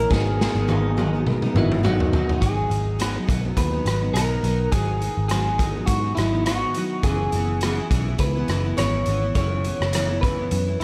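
A lightly swung sixteenth-note groove in 4/4 drives this mellow, lonely indie and bedroom pop excerpt, cut from a longer piece. A raw garage drum kit sits up front with a punchy kick, a medium-tuned snare, hi-hat, rim clicks and toms, its gritty, saturated sound rolled off at the top in a bright stone room, and it opens with a fill that runs until 2.4 seconds. Beneath it, a vintage muted electric bass stays round and foam-muted, while a picked dreadnought steel-string acoustic guitar fills the middle with lush chorus and a vibrato effect. An electric guitar through a small old amp carries the melody, slightly broken-up and compressed, with lush chorus and analog delay. A worn, woody upright piano, dark and slightly detuned with audible action noise and a cassette-tape quality, lingers in the background only until 2.4 seconds, and the harmony moves from G#m7 to F#7sus4 at 7.0 seconds, all within a small room ambience.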